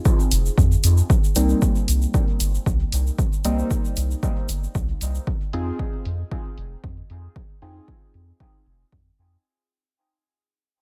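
A lightly swung groove sets a hypnotic pulse in this cavernous dub techno excerpt, cut from a longer piece, with a punchy, up-front electronic kick joined by layered electronic hi-hats softened by a low-pass filter and a touch of small-room ambience. A grainy, bright acoustic tube shaker sits close and dry in the groove until it stops at 5.2 seconds. Beneath it, a soft, round dub sub bass with a fast attack and sustained tone pumps with sidechain compression, up front in the mix. The deep, mellow chord stabs are dark and wave-folded, decaying through chorus, phaser, sidechain pumping and dub echo as they move from Fm7 to Cm7 and back to Fm7. Light reverb and an echo-heavy mix give the whole a spacious depth, and the music fades out from 1.1 seconds onward.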